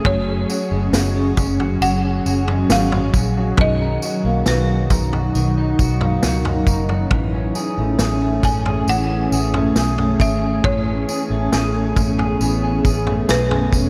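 A woody, bright marimba struck with hard mallets carries the melody through analog delay in this haunting, ethereal dream pop passage, cut from a longer piece and moving at an unhurried pace over F#sus2, Bmaj7 and Amaj7 chords. Around it, a slightly broken-up electric guitar plays arpeggios through lush chorus and analog delay, while an airy, detuned pad holds sustained chords with ensemble chorus. A dark, foam-muted fingered bass and a gritty vintage kit with tight kick, snare, tambourine and toms sit up front, and a moderate, lush hall reverb soaks the whole dreamy mix.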